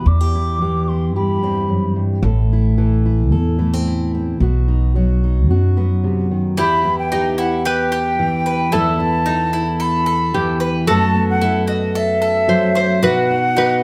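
This excerpt sits in a moderately reverberant large studio, giving the acoustic folk ensemble a spacious, reflective and wistful air at 111 BPM in a straight 4/4. A full-bodied fingerpicked steel-string guitar with fresh strings sits up front throughout, joined at the start by a woody pizzicato upright bass that plays until 6.5 seconds. An airy wooden baroque flute, tongued and expressive with vibrato, sounds distant as it offers a brief phrase that ends at 1.9 seconds. At 6.6 seconds the music settles into E harmonic minor: the flute returns with the melody, a metallic, nasal resonator slide guitar played with fingerpicks adds a warm second line, and a bright bowl-back mandolin with double strings picks arpeggios. The chords move from C/E through Am and B, then Em, Asus2/E, F#dim and back to B, ending on that unresolved chord as the recording cuts away.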